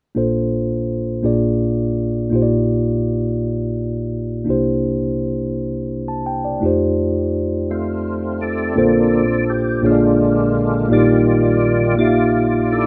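A slow, rolling 6/8 lilt with a straight feel carries this hopeful, soulful gospel fragment, cut from a longer piece. A mellow, clean tine electric piano, heard through its built-in speakers and sitting up front, lays down the accompaniment from the start, moving through rich chords such as Bbmaj9, Bb7, Ebmaj9/Bb, C9 and F9. At 7.7 seconds a tonewheel organ joins with sustained chords, its tone full and lightly overdriven, with third harmonic percussion, chorus vibrato and a fast rotary speaker giving it a churning shimmer. From 8.8 seconds the organ steps forward into a solo as the chord progression returns to its opening shape. Light reverb surrounds the pair, and the rough home demo mix keeps the sound intimate and unpolished.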